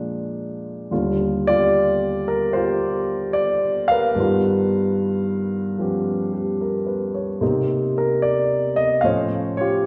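Moody and smoky, this short cut from a longer solo jazz piece unfolds at 74 BPM in 4/4 with a swung eighth-note feel, carried entirely by a warm, up-front grand piano ranging from Eb2 to F5. The harmony moves from Bb7 to Ebmaj9, then through G7alt and Cm7 before landing on A7alt near 9.0 seconds. A wet recital-hall reverb with a 1.4-second decay gives the piano the spacious ring of a church or concert hall.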